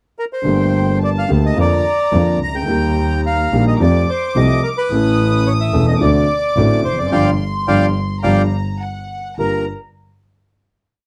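Passionate and sultry, this short, complete tango in G minor moves at 107 BPM in 4/4 with a rubato feel. A reedy bandoneon carries the motif-based melody in period phrases from 0.2 seconds, sitting up front with a boxy small-room character and a slapback echo. Beneath it, a concert grand piano gives intimate accompaniment with deep bass, audible action noise and a vintage smoothness, while a bowed double bass, played by one player, sounds biting and intense with vibrato and an airy bow; both use the tango rhythm of uneven groups of three and two eighths. A studio violin section floats quietly above as a counter-melody, played sul tasto with a soft attack and a pure, smooth top. The harmony travels from Gmadd9 through Eb, A and D7 to Gm7, with a band accent from 7.1 to 9.4 seconds before the parts settle onto a final Gm7 chord at 9.4 seconds. The sound is dry and close, like a 1970s studio recording with little reverb.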